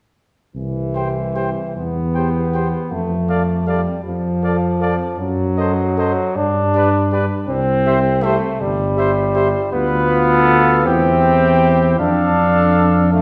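A bright, vintage-toned trombone and a mellow tuba open this noble, stately classical brass quintet excerpt at 0.6 s, sitting up front in a slow, rubato 6/8 at 53 BPM in C major, before a clear, soft-attacked second trumpet enters at 0.9 s and, at 1.0 s, a smooth trumpet melody and a distant, roomy French horn with light vibrato join further back, all carried by a wet recital hall reverb as the harmony moves from C through F#dim7 and G back toward Dm/F.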